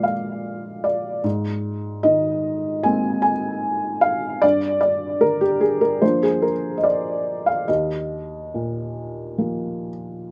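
Neoclassical minimalist piano in Eb major, moving at roughly 70-76 BPM in 4/4 with a loose, rubato feel that gives this short cut from a longer piece a hopeful, tender mood. A felt-muted upright piano plays alone from start to finish, spanning Eb2 to Ab5, its tone soft, mellow and dark, with a boxy character. The instrument sits up front and intimate, and the mechanical noise of its action is clearly audible beneath the notes. The harmony moves from Bb7 to Abadd9 at 1.2 seconds, then to Gm7 at 4.4 seconds and settles on Ebsus2 at 7.7 seconds. A light reverb gives the piano a little air, though the recording itself carries little sense of a surrounding space.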